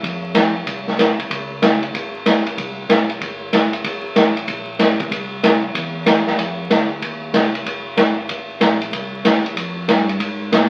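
A swinging big-band drum kit and a mellow tonewheel organ start together, setting a late-night, smoky soul jazz organ trio groove at 189 BPM in a swung 4/4. The punchy kick, medium-tuned snare, hi-hat and ride sit up front with a roomy, rolled-off sound, while the dark, round organ carries the bass line in the background through a slow rotary speaker. A moderate large-studio reverb and the crackle of a very old 78 rpm record frame this fragment of a longer piece, which shifts into a new section at 6.4 seconds before breaking off around 10.7 seconds.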